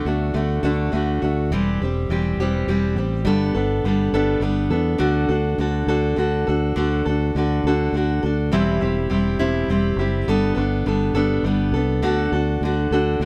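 The recording has a light reverb and a gentle studio ambience, with both instruments placed up front and close to the listener. This is a short passage cut from a longer folk rock and heartland rock piece, jangly and hopeful in mood, moving at 68 BPM in a straight 6/8 lilt in D mixolydian, tuned slightly high to A4 = 441 Hz. A picked steel-string acoustic guitar carries the accompaniment for the full 13.3 seconds, its auditorium-sized body sounding warm, with a little finger squeak audible. Beneath it, a fingered electric bass plays throughout in a low register, its tone warm, round, direct and amped, sitting slightly beneath the guitar in level. The harmony cycles twice through D, C/E and Gadd9 before settling back on D at 12.0 seconds.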